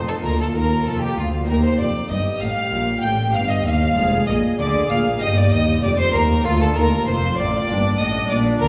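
Violin sections in two lines, a close, dry harpsichord and a smooth, distant viola section open this brilliant, festive baroque-style concerto excerpt, with a focused solo violin joining the melody at 0.1 s. From 0.2 s, a lush cello section and an even double bass section anchor the bass, while the chords move from Bb/D through Eb and Ddim/F to a close on Gm. The vibrato-rich strings sit in a reverberant recital hall, heard from further back in the room, while the bright, plucked harpsichord stays in the background.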